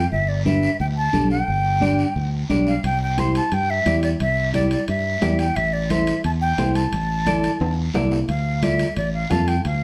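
Heard from further back in a reverberant studio, this joyful, festive cumbia at 176 BPM in C major puts an airy, expressive jazz flute with vibrato and plate reverb up front on the melody, over clean, fingered electric guitar accompaniment as the harmony moves through G, C, Am and Dm, a round, punchy fingered electric bass, soft-handed congas ringing in the background and a raspy guiro, with metal-shell timbales joining at 2.8 s and a drum fill at 7.6 s.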